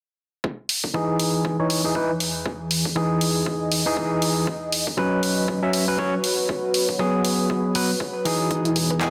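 A punchy, layered electronic kick enters at 0.4 seconds and a dark-hatted deep house kit of handclaps and hi-hat follows at 0.7 seconds, setting a swung 119 BPM groove in this short, soulful and sunny deep house excerpt in E major. Up front, a barky, overdriven tine electric piano plays gritty stabs through a filter sweep, analog delay and sidechain pumping over Emaj7 and A69 chords, while a moody, detuned ambient pad with chorus and built-in reverb breathes beneath. At 8.5 seconds a mellow sawtooth analog pad and a soft, round pluck playing arpeggios join in the background, all inside a lush hall reverb and a dense, heavily limited modern master.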